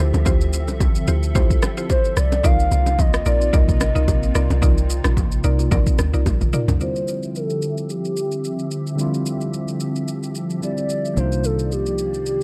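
A deep, round log drum bass sits up front in this soulful, late-night amapiano excerpt at 110 BPM, anchoring the opening 6.8 seconds beneath a woody, mallet-like synth pluck, ringing bongos and congas in the background, and a layered deep house kit of kick, rim click, shaker and toms that runs throughout. A hollow, clarinet-like synth lead with vibrato carries the melody over a flute-like, warbling pad with sidechain pumping, as the harmony moves between Dm11 and Cm11. At 6.8 seconds a filter sweep begins and a bell-like tine electric piano enters, and a punchy, foam-muted fingered electric bass arrives at 11.2 seconds, all within a dark, dry production.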